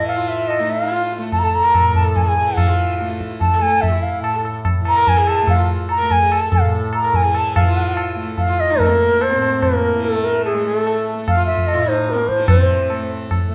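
Hindustani classical music in raga Todi unfolds in this introspective, meditative excerpt, cut from a longer performance and set in a steady three-beat metre. A pure, bamboo-toned bansuri carries the melody up front, its tongued notes colored by vibrato. Beneath it, a single bowed sarangi traces a second line with a nasal, earthy voice, gliding between pitches with portamento while its sympathetic strings ring. A softly plucked tanpura supplies a bright, buzzing drone that shimmers underneath, and a high-tuned tabla sits close and dry at the front with a ringing tone. The ensemble sounds in a moderate recital hall, and around 7.6 seconds the music moves into a new section that carries on to the end.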